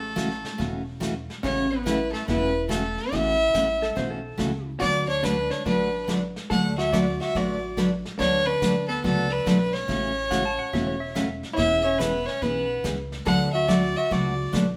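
Playful and swinging, this western swing country tune moves at 142 BPM in A major. An up-front fiddle with light vibrato and a nasal, earthy tone carries the melody, shadowed by a dark, clean hollow-body jazz guitar and over a bright dreadnought acoustic guitar, a thumpy, woody upright bass and a warm, brushed vintage drum kit. A clean lap steel slides in with scooped volume swells at 3.8 and 10.3 seconds, and the whole band plays live together in one room with moderate reverb.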